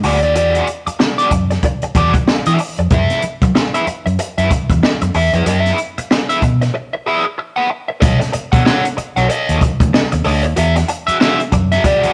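Swung sixteenths in 4/4 drive this playful, strutting funk clip, cut from a longer piece. A crunchy, overdriven guitar with wah sits up front over E9 and F#9sus4 chords, alongside a dark, round, foam-muted fingered electric bass and a compact cocktail kit with a punchy kick and high-tuned snare. After a break at 6.7 seconds, a new section arrives at 8.0 seconds on B9 before returning to E9, all in a rough rehearsal-room recording with moderate stone-room reverb.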